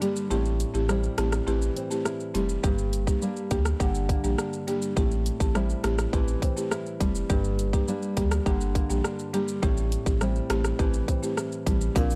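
A buzzing, woody marimba with sidechain pumping opens this hypnotic, bouncy dancehall excerpt at 103 BPM alongside a dark, fingerpicked nylon-string guitar playing arpeggios and a tight, up-front electronic island pop kit of kick, dark hi-hat, rim click and shaker, before a deep, thick saturated sub bass arrives at 0.3 seconds under chords moving between Am7 and Gm, with a faint egg shaker appearing in the background at 12.0 seconds in a small room on a dry, gritty recording.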